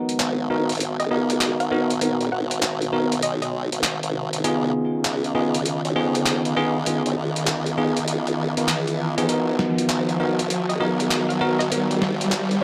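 A swung 99 BPM glitch hop groove in 4/4 drives this funky, swaggering build-up in G# dorian, where a gritty, pitched-down boom bap sampler kit of snare, hi-hat and handclaps sits up front in a small room alongside a wobbling formant-sweep bass with tube saturation. Bright, bell-like tine electric piano stabs cut through a low-pass filter and digital delay, while a dark, warbling tape-like pad with 12-bit sampler grit holds sustained chords moving from G#m7 to C#9 at 4.4 seconds and back at 9.3 seconds. In the background, a woody wave-folded pluck melody appears from 1.0 to 3.5 seconds and again near the close, and an electronic riser builds from 0.8 seconds through the end of the excerpt under light reverb.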